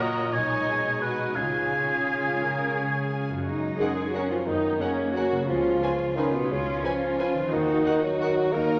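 A sweeping, elegant classical passage in F# major at 175 BPM in a rubato 3/4 opens with a focused violin section carrying the melody over a darker, distant second violin line with portamento, an up-front warm oboe that drops out at 3.1 s, a rich viola section, ringing fingerpicked harp arpeggios, and a smooth cello section joined by double basses at 0.3 s, before a close-miked mellow bassoon and a roomy background horn section holding sustained chords enter at 3.8 s, set in a reverberant scoring-stage ambience.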